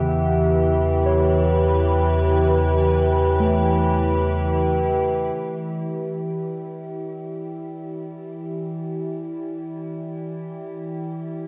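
From the start, an evolving wavetable pad sits up front in this melancholic, spacious ambient piece in free time, with detuned, morphing sustained chords that drift from G/E into Em7, in E dorian tuned to A4 = 435 Hz. Alongside it, muted felt-like synth keys play soft, intimate arpeggios through chorus and delay, while a deep, round sub bass holds E2. In the background, a glassy, ethereal glass harmonica adds a pure, smooth texture, close-miked and dry. The bass drops away at 5.3 seconds and the keys at 6.2 seconds, as the harmonica fades in from 5.4 seconds over the pad's lingering chords. A lush hall reverb bathes the sound, and a worn, warbling cassette tape character lends the whole excerpt a drifting pitch.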